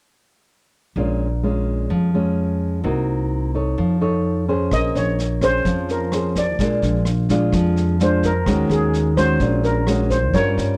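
A dry, close 1970s-style studio recording with little reverb frames this melancholic, wistful bossa nova fragment in Bb minor at 128 BPM, where a dark, thumb-plucked nylon-string guitar and a woody pizzicato upright bass open at 1.0 s over chords such as Bbm7 and F7b13, before a mellow, shimmering steel pan struck with soft rubber sticks takes the melody at 4.7 s alongside a subdued, rolled-off vintage brush drum kit with a tight kick, rim click and snare.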